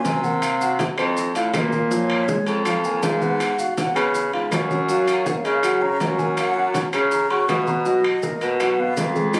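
Fiery and driving, this Afro-Cuban jazz excerpt runs at 161 BPM in 4/4. A breathy, hollow concert flute carries the melody with a straight tone and plate reverb, while a natural-sounding baby grand piano comps through chords such as Ebm69, Db7 and Gbmaj7. Up front, a mellow baritone saxophone plays the bass line with vibrato and scooped notes. Ringing, distant timbales and grainy maracas close at hand sound from the start, damped, low-tuned congas and round bongos join at 0.1 seconds, and woody claves enter in the background from 0.4 seconds, all heard through a phone recording of the room with compression and a moderate studio reverb.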